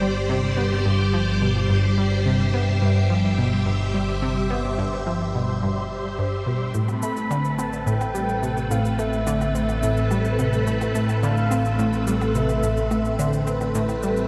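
Soaked in a lush hall reverb, this dreamy, mysterious and expansive snippet of sequencer-driven ambient space music pairs swirling, vintage string-machine chords, bright and up front with ensemble chorus and phaser, against a round, detuned analog pluck riff with chorus and analog delay over a fat, saturated sawtooth bass, moving from Gsus4 to Amadd9 at 6.7 s as electronic shaker and percussion blips with delay slip in, before a breathy, flute-like synth lead with vibrato, subtle chorus and analog delay takes up the melody at 7.0 s.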